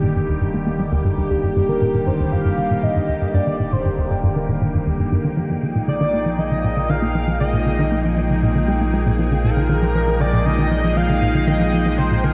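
Ambient, sequencer-driven space music with a hypnotic, expansive mood, built on a punchy, dark sequencer bass riff with tape echo and a filter sweep, a round sub bass that fades in beneath it, a bright, swirling phased pad holding sustained chords up front, and a breathy, wind-like noise texture in the background, while a shimmering, retro pulse-width lead with chorus, vibrato and tape echo carries the melody from 1.3 s as the harmony moves from Ebmaj7 to Bb7sus4 at 5.4 s, all in a dreamy mix soaked in lush hall reverb.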